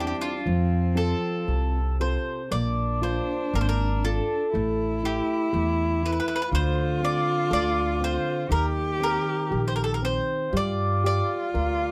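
Tender and nostalgic, this short cut from a longer fado-style ballad moves in a loose, rubato 2/4 that lets each phrase breathe. A mellow, round mandolin carries the melody up front, its picked double strings giving the tune a gentle shimmer. Beneath it, a single cello plays a second line with a soft attack, light vibrato and an airy, sul tasto bow, its close, slightly nasal and boxy tone sounding intimate. A classical nylon-string guitar fills in the accompaniment with thumb-plucked notes, a finger squeak now and then catching the ear, while a woody pizzicato upright bass on steel strings anchors the low end prominently. All four parts play throughout, and the harmony drifts from F through Bb, Dm7 and Eb6 before settling on Gm near 10.5 seconds, all wrapped in a moderate studio reverb.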